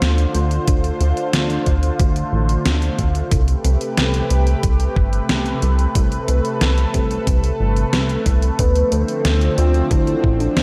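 A glossy, chorused synth bass sits up front in this nocturnal, driving synthwave excerpt, its retro pulse-wave and sawtooth tones shaped by pulse-width modulation, ring modulation and a filter pluck, with a fast attack and a mellow sustain. Behind it, a lush unison pad holds sustained chords built from thick, detuned sawtooth and square waves with a slow attack, treated with chorus, phaser and sidechain pumping as the harmony moves from Dm7 to Am7 and back. A detuned 8-bit digital drum machine supplies hi-hat and a medium-tuned snare with a sampler-style, tape-tinged character, joined at 0.7 seconds by a thumpy electronic kick, and both drum parts carry studio reverb. At 8.6 seconds a soft octave-layered synth lead enters with the melody, its round triangle and sine tones reinforced by a sub octave and colored by vibrato, chorus, vintage 12-bit sampler grit and a diffuse ambient delay for a dark, full voice. 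The mix is dreamy and soaked in a moderate, lush hall reverb.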